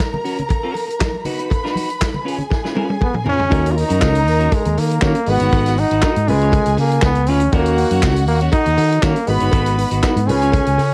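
A straight disco groove at 120 BPM in Eb minor drives this danceable, sultry excerpt, with a dry, up-front soul drum kit of tight kick, medium-tuned snare, hi-hat, toms and handclaps, backed by a very quiet, saturated cowbell throughout. Bright, hard-handed congas add percussion at the start before dropping out at 3.4 seconds, as a drum fill leads into the main groove. A clean, picked electric guitar and a lush, bowed violin section with smooth vibrato and tape echo fill out the sound from the opening, while the chords move from Gb/Db through B/D# to Db7. At 3.5 seconds a fingered electric bass arrives up front, amped and warm, alongside a very quiet, intimate grand piano whose action noise can be heard, as the harmony settles into a cycle of Ebm7, Abm7 and Db7. Leading it all is a bright, close-miked trombone with pop-style vibrato, entering at 3.0 seconds and carrying the melody above a dark production with light studio reverb.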